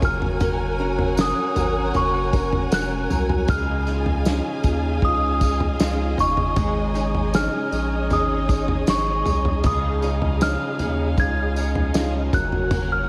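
A straight 4/4 pulse from a loose indie drum kit with a fat snare and tight kick, alongside a bright, jingly tambourine, carries this tender, emotional pop ballad, where a bell-like, delicate celesta sings the melody through a diffuse ambient delay over a woody upright piano with audible action noise and analog chorus, dark bowed strings with expressive vibrato, a boxy picked archtop guitar arpeggiating in the background through ensemble chorus and delay, and a deep, saturated sub bass up front, the whole mix soaked in a dreamy, lush hall reverb.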